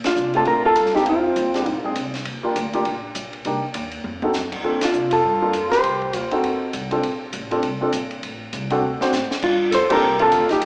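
Heard through a club PA with a small-speaker tone, this live snippet of small-group swing and bop sits in a lush, wet hall reverb over the ambience of a small room. A dark, clean hollow-body electric guitar carries the melody up front in fingered phrases with slapback echo. A mellow alto saxophone, with vibrato, scooped notes and a smooth top, plays a second line in overlapping stretches, also with slapback echo. An intimate, natural baby grand piano with short sustain and audible action noise comps up front with slapback echo. Beneath them, a woody pizzicato upright bass with steel strings and a compact, dry cocktail kit with dark cymbals, a high-tuned snare and a punchy kick play throughout, the drums adding fills at 4.0 and 8.8 seconds. The band accents land together, giving the swing a warm, playful character.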